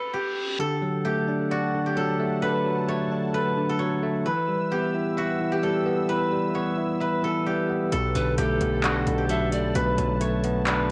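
A half-time trap pulse at 131 BPM shapes this brooding, dark hip hop fragment, which opens on an electronic reverse cymbal as a silvery, fingerpicked steel-string zither rings out an up-front melody across Aadd9, D, Em and Bm7, soon joined by a clean, bell-like tine electric piano and a smooth, detuned sawtooth pad with chorus in the background, both carrying cassette tape colour, until at 7.9 s a saturated, aggressive 808-style bass and a booming analog drum machine with handclaps and metallic hi-hats arrive, joined at 8.2 s by a brief breathy, reedy bamboo pan flute second line with tape echo, all captured dry in a home cassette recording.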